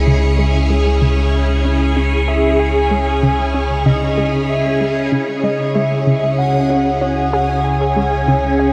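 A straight 4/4 pulse at 95 BPM drives this hypnotic, cosmic piece of ambient, sequencer-driven space music in C# minor, tuned to A4 = 436 Hz and cut from a longer work. Up front, a bright, swirling phased string machine holds sustained C#madd9 chords through ensemble chorus and phaser, resting on a deep, dark analog bass that sits on C#2. From 0.1 s, an analog pluck with a nasal, wave-folded edge plays a riff in the background through chorus and tape echo. Higher up and also in the background, a bubbling, resonant texture moves in random filter steps, with chorus and its own reverb. A filter sweep runs on the arpeggio sound across the whole passage, and at 2.3 s a mellow, octave-layered lead enters with vibrato, chorus and tape echo, carrying the melody between D#5 and G#5. The recording sits in a huge, wet ambient reverb with a 7.2 s decay.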